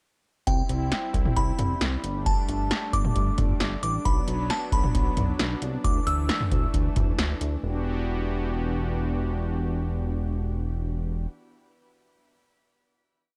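A glassy synth bell carries the melody of this short, driving, nocturnal synth-pop piece, stating its motif-based phrases high up between 0.5 and 6.7 seconds, its crystalline FM tone softened by chorus, tape echo and shimmer reverb. Beneath it, a brassy analog pad holds sustained chords built from detuned sawtooth with a filter swell, vibrato and a vintage warble, also bathed in chorus and shimmer reverb. An up-front chorused synth bass pulses in eighth notes with a glossy, retro pulse-wave character and a plucked filter attack, while an electro analog drum machine drives the 134 BPM beat in E minor with a deep kick, punchy snare, metallic hats and syncopated toms. The drums drop out at 7.5 seconds, leaving pad and bass to ring out on a closing Em7 that lasts until 11.3 seconds. The sound overall is dry and gritty, with a hardware edge.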